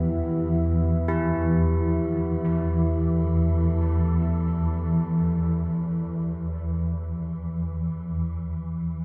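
A cavernous cathedral reverb surrounds this ominous dark ambient drone in free time and E minor, where an up-front, swarming, detuned granular drone holds low from 0.0 to 9.0 seconds beneath a deep, wave-folded pad of sustained chords with chorus that fades out by 8.4 seconds, while bronze carillon bells ring arpeggios on E4 through tape echo from 1.1 to 6.5 seconds in this brief cut from a longer piece.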